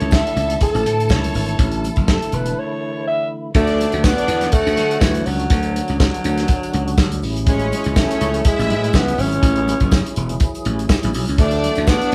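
A lightly swung 16th-note disco groove at 122 BPM in 4/4 drives this celebratory, joyful cut from a longer piece in A major, built on a tight kick, mid-tuned snare and hi-hat from a soul drum kit and a bright, punchy slap bass up front, with very quiet thin-skinned congas and a jingly tambourine beneath. A raspy, growling alto saxophone takes a jazz-style solo over the opening A chord, with a break from 2.6 to 3.5 seconds, then carries the melody as the harmony moves through Dmaj7, Amaj7 and D. A lush, distant bowed string section adds a second line, and a fat, percussive tonewheel organ with key click, chorus vibrato and slow rotary speaker holds chords in the background, all in a moderate live-room ambience.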